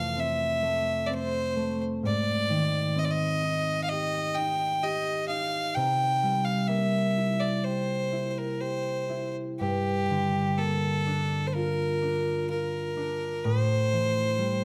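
Rubato and unhurried around 64 BPM in 4/4, this fragment of a Celtic slow air in G dorian carries a longing, mournful mood across its 14.6 seconds. A single bowed fiddle sings the melody up front with a clear, biting tone, light vibrato and an airy, intense bow. Beneath it, a concert harp rings with thumb-plucked accompaniment through chords from Fmaj7 to Am7, all captured by close, detailed microphones in light reverb.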